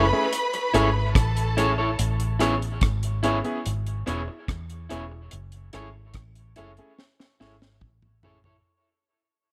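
A deep, dry reggae drum kit sits up front in this bittersweet, smooth lovers rock fragment, its high-tuned snare, tight kick, rim clicks, hi-hat and toms coming in at 0.3 seconds with a dark, rolled-off top. Beside it, a vintage muted fingered electric bass holds the low end with a round, foam-muted tone, also placed close to the listener. A bright grand piano supplies brilliant, natural accompaniment, while an electric guitar through a small old amp adds picked, slightly broken-up stabs carried by dub echo. A lush studio string section plays a bowed second line with vibrato and portamento, also touched by dub echo, and drops out at 2.0 seconds. The harmony moves from a rootless F#m7 to Amaj7 and back to F#m7 under a fade-out, with a drum fill from 7.0 seconds, all set in light reverb and studio ambience as part of a longer piece.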